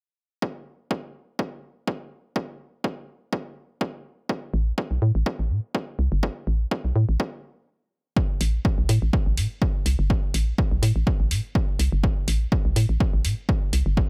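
Dry and close, this sparse, quirky minimal techno excerpt in A minor at 124 BPM, with a lightly swung 16th feel, opens on a punchy, overdriven analog kick re-recorded in a large room and placed up front, joined at 4.5 seconds by a hollow, bouncy, dark FM bass with a fast attack, short decay, tube saturation and sidechain pumping, and after a brief stop an analog hi-hat, also re-recorded in the large room and driven with overdrive, enters at 8.4 seconds.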